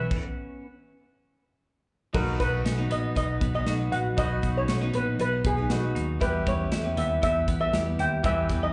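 Nostalgic and bright, this jangly indie pop clip, cut from a longer piece, puts a mellow, shimmering steel pan in the lead, with plate reverb and slapback echo, over a twangy, compressed twelve-string electric guitar playing arpeggios, a very quiet jumbo acoustic guitar with finger squeak, a dark, foam-muted picked bass, and a punchy acoustic drum kit with crash, hi-hat, kick and snare. The band halts for a stop between 0.1 and 2.1 seconds, then a woody upright piano with audible action noise and a ringing vibraphone with hard mallets and slow motor vibrato join in the background from about 2.1 seconds. The whole performance sounds like a live gig heard through a club PA, with moderate room reverb and a dulled top end.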